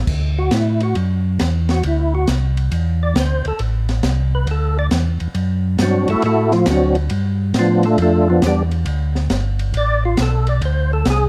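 A bluesy, swinging soul jazz organ trio groove in D mixolydian, moving at 137 BPM in 4/4 with a firm swing on the eighth notes, cut from a longer piece. A mellow, round tonewheel organ carries the bass line low in the register, its clean tone marked by key click and a slow rotary speaker, sitting up front from the very start. An open jazz drum kit joins at 0.1 seconds with crash and ride cymbals, hi-hat, a punchy kick and a high-tuned snare, sounding acoustic and smooth in a small room, set lower in the mix than the organs. At 0.4 seconds a warm, fat, percussive tonewheel organ takes the solo, its third harmonic percussion, key click, chorus vibrato and slow rotary speaker giving the line a percussive bite, with plate reverb around it. The harmony rests on D9 before shifting to G9 at 7.1 seconds and settling on D5 near the close, all wrapped in light reverb and a dark, warm production.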